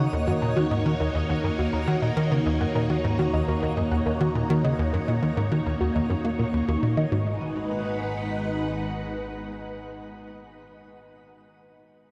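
Cosmic and mysterious, this fragment of ambient, sequencer-driven space music in G# minor moves at 103 BPM, with a tight, punchy sawtooth sequencer bass riff driving beneath a warbling, lo-fi pluck arpeggio soaked in tape echo, an up-front, lush string machine holding phased chords, a detuned analog drone and a faint twinkling granular shimmer in the background, all set in a vast, echoing space as the harmony shifts from D#m7 to G#m7 at 7.1 s.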